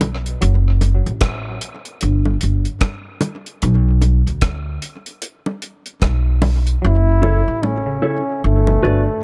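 A swung 4/4 dub reggae groove, heavy and hypnotic, opens on a dry drum kit of tight kick, hi-hat and rim click alongside a woody, thumpy pizzicato upright bass on gut strings and round, low-tuned bongos with tape echo, while a stringy muted clav flickers briefly in the background; the drums stop at 6.8 seconds as a clear trombone takes a solo melody with light vibrato over returning clav arpeggios and a dark, clean, compressed electric guitar entering at 7.2 seconds, the trombone, clav and guitar all carried on tape echo in this piece cut from a longer one.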